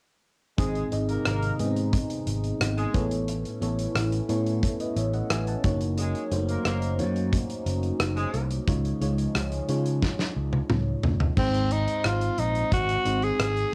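A glassy, bell-like FM electric piano with chorus opens this glossy, uplifting 1980s-style pop fragment alongside a growly picked electric bass, a big rock drum kit with a fat snare and punchy kick, and distant, mellow horn stabs, while a swirling phased analog pad holds sustained chords in the background; a drum fill at 10.0 s then leads to a raspy, forceful tenor saxophone melody that steps up front at 11.4 s, the whole captured as a home cassette recording in a moderate studio reverb.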